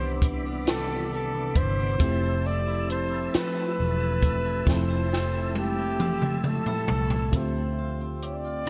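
Bright, 1980s-style digital production with light reverb and small-room ambience frames this intimate, tender slow R&B excerpt in 6/8 at 45 BPM, moving from Cmaj9 to Fmaj9 and then Dm11. A breathy, whispered flugelhorn carries the melody up front with vibrato and a soft attack, over a glassy, bell-like FM electric piano with chorus, a clean, twangy picked electric guitar on a second line, a dark, round foam-muted fingered bass, and a lightly overdriven tonewheel organ holding sustained chords through slow rotary speaker and chorus vibrato until 7.3 seconds. A compact cocktail drum kit with a high-tuned snare, tight kick, rim click, hi-hat and toms sits up front with gritty 12-bit sampler texture and gated reverb, entering at 0.2 seconds and playing a fill from 4.7 seconds.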